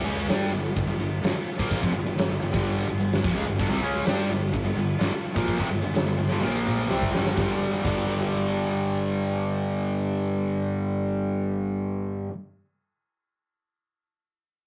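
Hard rock at 127 BPM in G minor with a heavy, menacing mood, this excerpt opens with a double-tracked, bright distorted guitar riff over a sludgy overdriven guitar and a growly, fuzz-laden picked bass, while a huge acoustic drum kit with a fat snare, punchy kick and bright cymbals sits up front until a fill from 6.4 to 7.4 seconds and drops out at 8.0 seconds, a crunchy overdriven guitar joining at 3.6 seconds, all captured in a rough rehearsal-room recording with small-room reverb and saturation.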